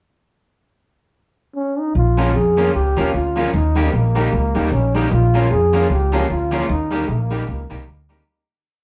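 Ska at 152 BPM in Bb dorian, driving and energetic, with swung eighths over a short piece that moves between Bbm and Eb. A breathy, close-miked trombone with tube saturation and light vibrato enters at 1.6 s with a hook-based melody, while a woody, thumpy upright bass walks up front with chromatic approach notes; a twangy, slightly broken-up electric guitar and a warm upright piano in the background play off-beat chops. The band sounds live in one room with wet studio reverb and a cassette-tape grain, and the piece fades out from 6.7 s.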